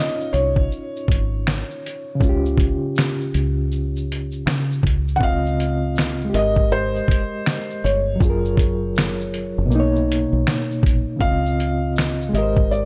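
Cosy and dreamy, this lo-fi hip hop piece moves at 80 BPM in 4/4 with a swung sixteenth-note feel, drifting from Db lydian into Db major around 5.2 seconds. A felt-muted upright piano carries the melody in a soft, mellow, intimate voice with a vintage, filtered tone. Beside it, a bright, reedy electric piano supplies the accompaniment up front, lightly overdriven with a fast tremolo, cassette tape colour and a low-pass filter, as if heard through its built-in speakers. A compressed, pitched-down sampler-style drum kit enters at 0.2 seconds with a thumpy kick, medium-tuned snare, hi-hat, shaker and finger snaps, muffled and re-recorded in a small room, while a deep, round, punchy dub electric bass with transformer saturation follows at 0.3 seconds. The harmony moves through lush major-ninth chords, from Dbmaj9 to Abmaj9, Gbmaj9 and Cbmaj9 before circling back, and the whole excerpt sits in a gritty, dry hardware sound touched with digital ambience.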